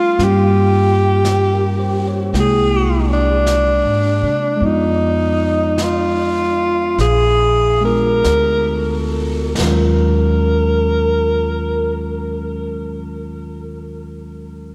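A breathy alto saxophone leads this melancholic, wistful jazz ballad fragment, its clear subtone voice sitting up front with vibrato and a touch of analog delay. A bell-like tine electric piano carries the accompaniment, bright and clean under a subtle chorus, and it plays on alone after the saxophone and bass stop at 12.7 seconds. Pizzicato upright bass on gut strings gives a woody, thumpy low end, while a brush kit in a studio room adds quiet brushed snare, hi-hat and dark china cymbal. The swung 4/4 pulse slows from 0.2 to 9.6 seconds as the harmony moves through Gm7b5, C7b13, Fm7b5 and Bb7b9 before landing on Ebm11. A plate reverb soaks the mix in a dreamy haze.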